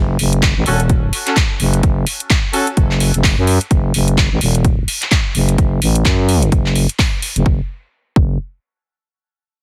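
Built on a 128 BPM pulse in 4/4 with a 58% swing on the sixteenths, this short bass house cut in F# minor struts with a gritty, swaggering attitude. A growling FM bass sits up front from the start, thick and tube-saturated, ranging from E1 to F#2 with sidechain pumping and a filter sweep that runs until 7.5 seconds. A layered house drum kit of handclaps and metallic hi-hats enters at 0.2 seconds, followed at 0.4 seconds by a punchy, tape-warm electronic kick drum. Between 0.7 and 2.6 seconds a warm horn section adds brief pop-style stabs with light vibrato and a smooth top, with sidechain pumping and trailing off into dub echo. The mix is dry and heavily compressed into a dense, radio-ready sound, and the fragment closes with a brief new section after the sweep ends.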